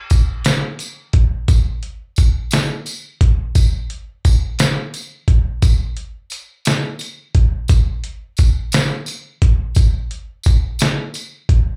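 A trip hop sampler-style drum kit leads this short gospel excerpt, sitting up front with a compressed, pitched-down, gritty character, a thumpy kick, a medium-tuned snare and hi-hat. It moves at 58 BPM in a straight 6/8, giving the passage a slow, hopeful and reverent feel. A tambourine joins it from the start, jingly and acoustic, placed at a distance as if heard in a large room. The whole piece comes across like a live gig heard through a venue's PA, with light club reverb around it. Both parts enter at about 0.1 seconds; the tambourine drops out around 11.5 seconds and the drums around 11.7 seconds, just before the close at 11.8 seconds, forming a single section cut from a longer piece.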